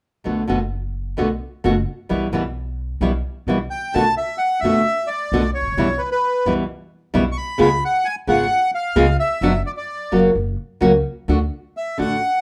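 A dramatic, sultry tango in B minor, this short excerpt moves at 130 BPM in 4/4 with a loose, rubato feel. A fingerpicked nylon-string guitar opens at 0.2 seconds, up front and full-bodied, with a deep classical tone, and an upright bass joins almost at once, its plucked steel strings sounding woody, growly and thumpy underneath. The bandoneon enters with the melody at 3.7 seconds, reedy and bright as it sits forward in the mix, high above the guitar and bass. The harmony circles between Bm7 and Em/B before turning to C#7, then passes through Bm/F# and F#5 and lands on D. Light reverb gives the trio a modest sense of space, and the recording is cut from a longer piece.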